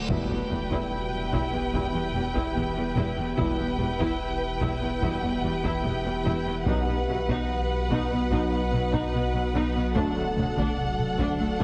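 A glassy FM pad with ensemble chorus and a deep, clean sine sub bass open this vast, brooding hybrid orchestral and electronic film-score excerpt in E minor at 73 BPM, with a background reverse cymbal and impact running until 3.4 seconds, as lush bowed violins carry an expressive vibrato melody over a smooth second violin line, distant violas, rich background cellos and double basses, very quiet mellow French horns and bright trombones holding chords, and hard-stick taiko drums, all moving through Em, B and D in a concert hall reverb with a heavily compressed, radio-like sound.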